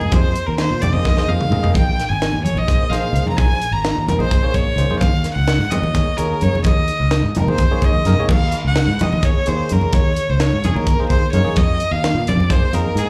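Driving and slick, this electric jazz fusion excerpt moves at 257 BPM in a straight 7/8 in Eb dorian, with a clear, nasal, bowed violin carrying the melody over a bell-like tine electric piano, both touched with slapback echo. A bright, punchy fingered electric bass sits up front beside a tight funk drum kit with a high-tuned snare and punchy kick, while ringing congas stay in the background until 12.6 seconds. The drums play fills at 1.0 and 7.7 seconds, and the whole performance comes through a venue's PA with club reverb and small-room ambience.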